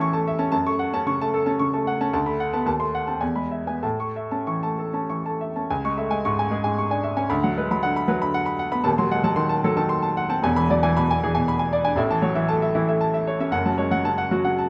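Lightly reverberant and up front, this short cut from a longer romantic character piece features a clear, natural baby grand piano playing alone in A major and 3/4, its short-sustained tone ranging from D#1 to C#6 as a hopeful, passionate rubato moves between 94 and 120 BPM and the phrase begins again at 5.7 seconds through C#m, Bm/D, D#dim7 and E7 harmonies back toward A before settling on F#m.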